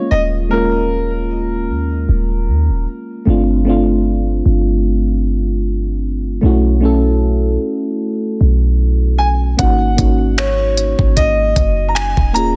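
Longing and sensual, this slow contemporary R&B excerpt at 76 BPM moves on lightly swung sixteenths as suspended ninth chords drift from D#9sus4 through G9sus4 and B9sus4 to G#9sus4. A mellow, round FM electric piano with chorus carries the accompaniment throughout over a deep, boomy 808-style bass, while a boxy concert grand piano with long sustain and delay states the melody, returning at 9.2 seconds. At 9.6 seconds a smooth, tape-tinged drum kit arrives with a knocking kick, finger snaps and hi-hat, the mix sitting inside a digital ambience.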